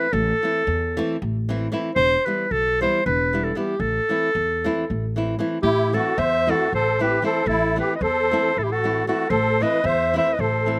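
Balkan folk in the manner of a wedding band, this short cut from a longer piece moves in a straight 7/8 with a restless, bittersweet mood. A clear clarinet with a soft attack carries the melody from the start, close-miked and up front in a classical solo style. Beneath it, a fingerpicked nylon-string guitar supplies warm, classical accompaniment while a pizzicato upright bass adds a woody, dark, thumpy low end. At 5.6 seconds the second section begins and a reedy musette accordion joins with a shimmering second line, its wet tuning touched by slapback echo. The harmony moves from A minor to E minor and back, and the dry outdoor recording carries little reverb and scarcely any sense of a room.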